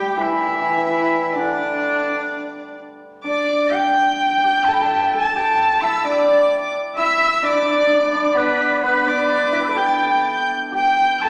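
Pastoral and festive, this excerpt of Chinese traditional chamber music moves at a rubato 64 BPM in 2/4 in the D zhi mode, with a reedy, buzzing large dizi carrying the melody in a distant, tongued straight tone. Alongside it, a clear erhu and a dark, husky horsehead fiddle add bowed second lines with vibrato and portamento, while a mellow hammered dulcimer rings and shimmers in the low register. All four play throughout, bathed in a recital hall's reverb, with the music shifting into a new section at 3.2 seconds.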